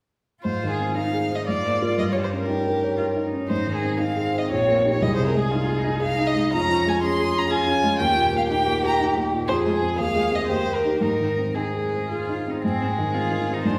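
A rich, smooth-topped violin carries the melody up front with even vibrato, while a cello adds an expressive second line with vibrato and portamento, and an intimate grand piano, its action noise audible, supplies the accompaniment from 0.4 s to 13.8 s. This graceful, cheerful excerpt comes from a quick classical-period movement for piano trio in Ab major and 3/4 at 119 BPM, played with rubato, with harmony that moves from Ab through Eb and Db/F to Fm before closing back on Ab. The trio sounds in a reverberant recital hall, whose 1.7-second decay lends the warm, natural tone a spacious glow.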